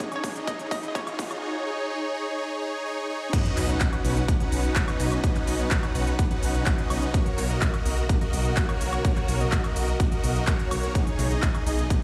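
Uplifting and euphoric, this excerpt of festival progressive house at 126 BPM in B major opens with a build-up where a hollow, nasal square pluck melody with chorus and dub echo and a drum fill run until 1.4 seconds, alongside a background riser and sub drop that carries on to 5.2 seconds, before the drop lands at 3.3 seconds with an impact. Huge, lush supersaw chords pump up front under sidechain and dub echo, while a thick, menacing detuned saw bass on B1 enters at 0.2 seconds, saturated and high-passed, beneath a punchy, tape-warm kick and a crisp-hatted big-room kit of claps, ride, crash, shaker and woodblock re-recorded in a large room. A very quiet, distant string section sustains bowed chords with vibrato as the harmony moves from D#m7/B through Badd9 and F#/B to C#sus2/B, all set in a large studio reverb heard through a big sound system in a bare room.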